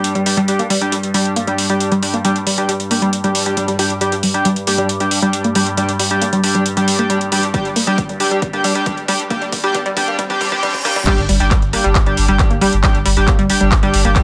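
A straight 4/4 pulse at 136 BPM drives this hypnotic, relentless stretch of peak-time techno, cut from a longer piece and opening on a G5 chord. Up front, a bright, edgy sync-sweep polysynth fires nasal stabs, joined by a round sawtooth-and-square analog pluck riff with a noise layer and filter sweep; both parts carry chorus, digital delay and sidechain pumping. Beneath them, a resonant drone with moving overtones enters on a slow attack through chorus, phaser and its own reverb. A techno drum kit of handclaps, crash cymbal and metallic hi-hats, re-recorded in a small room, pumps and thins under high-pass filtering. A very quiet electronic swell, riser and reverse cymbal creeps in at 3.3 seconds, and a build-up from 4.0 seconds brings a filter sweep on the synth arpeggio sound; a punchy, layered electronic kick drum enters at 7.5 seconds as a drum fill begins. At the drop at 11.1 seconds the drone falls away and a deep, mellow sine sub bass on G1 arrives with overdrive, low-pass filtering and sidechain pumping, the whole mix sitting in a light reverb.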